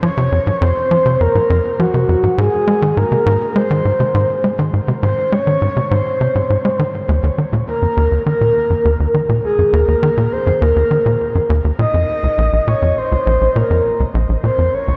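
A dreamy mix soaked in a lush hall reverb with a long three-second tail opens this short ambient cut from a longer piece, expansive and hypnotic in mood. At 102 BPM in a straight 4/4, it sits in Eb dorian, tuned slightly below standard pitch. A tight sequencer bass drives a riff spanning Bb1 to Ab3, its sawtooth and square-wave tone shaped by a punchy filter pluck with a fast attack and a decaying release, set up front and given a delay. Above it, a breathy, flute-like synth lead carries the melody between Gb4 and Eb5, its soft triangle and sine tone blended with a noise layer and a sub octave, entering gently and sustaining under analog chorus and delay. Both parts play from the start, the bass stopping at 14.9 seconds and the lead carrying on to the end at 15.0 seconds, while the harmony moves through F5, Ab, Eb5 and Bbm.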